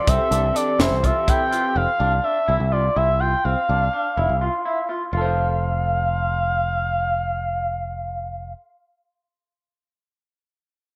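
Progressive instrumental band music in 7/8, intricate and driving, this brief cut opens with a crisp fusion drum kit with a high-tuned snare and tight kick and a hollow, flute-like soft pad, both of which drop out by about 1.7 seconds. A smooth, expressive sawtooth lead with vibrato and portamento carries the melody up front, over twangy, slightly broken-up guitar arpeggios bathed in spring reverb and slapback echo, and a punchy picked electric bass. The harmony sits on Fmaj7 before settling onto F at 5.1 seconds, all within a moderate studio reverb.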